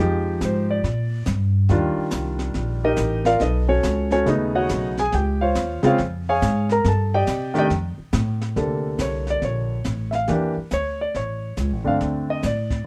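A swung 4/4 at 140 BPM in Bb major carries this relaxed jazz piano trio excerpt, where a polished, present concert grand with deep bass and short sustain takes a solo for the first 8.6 seconds over rich extended chords. Up front beside it, a woody, thumpy pizzicato upright bass with steel strings holds the low end, while a brushed drum kit enters at 0.4 seconds, dark and smooth in a small room, with a high-tuned snare and a boomy kick. The dry sound keeps the trio close and intimate.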